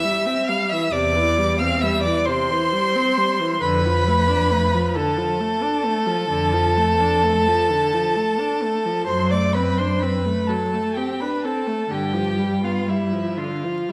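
In a rubato 12/8 at about 39-45 BPM, this serene, lyrical excerpt from a slow romantic string quartet movement sets a bowed first violin singing the melody high with vibrato and expressive portamento, over a focused, smooth-topped second violin line, a viola accompaniment that also slides between notes, and a rich, up-front cello bass entering at 0.9 s, all passing from C/E through Dm/F and D7/F# to G7 in a reverberant recital hall dusted with vinyl crackle.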